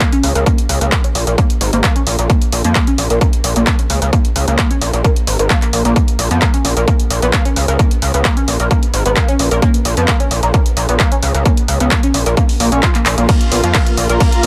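A distorted, overdriven kick drum sits up front and drives this intense, relentless peak-time techno excerpt in a straight 4/4. Beside it, a gritty, aggressive synth bass built from sawtooth, sync and ring-modulated tones adds a saturated, plucky low end that pumps against the kick. A screaming, guitar-like synth lead plays a riff through distortion, phaser, chorus, tape coloring and dub echo, with a filter sweep running across it until 13.3 seconds. The techno kit's handclaps, tape-warm hats and ride cymbal, re-recorded in a small room, pulse with sidechain pumping on the hats and cymbals. A drum fill and band accent at 13.1 seconds lead into a drop at 13.3 seconds, where a dark, veiled con sordino string ensemble enters with soft-attack bowed vibrato. The overall sound is dry, with little reverb.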